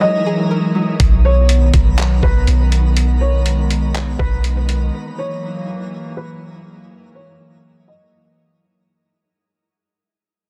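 A dense, heavily limited, dry-sounding mix opens this floating, dreamy cloud-rap fragment with a twangy, string-like resonator pluck arpeggiating in the background alongside a felt-muted upright piano melody, a hollow, flute-like pad pumping with sidechain, and a sparkling granular shimmer, before a gritty, pitched-down sampler kit of thumpy kick, hi-hat and handclaps and a deep, round 808 bass enter up front in a half-time groove from 1.0 seconds until nearly 4.9 seconds, as a filter sweep and fade-out run through to the close.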